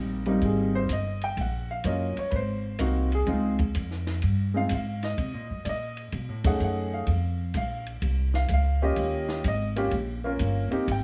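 Swinging eighths at 126 BPM in 4/4 carry this brief fragment of a warm jazz piano trio in Ab major, where a worn, vintage grand piano takes the lead as a smooth, up-front solo through changes like Abmaj9, Dbmaj7, B13 and Eb7, a woody, thumpy pizzicato upright bass sits close beside it, and a dry cocktail kit with dark cymbals, a high-tuned snare and a punchy kick joins at 0.3 seconds, all in a light reverb.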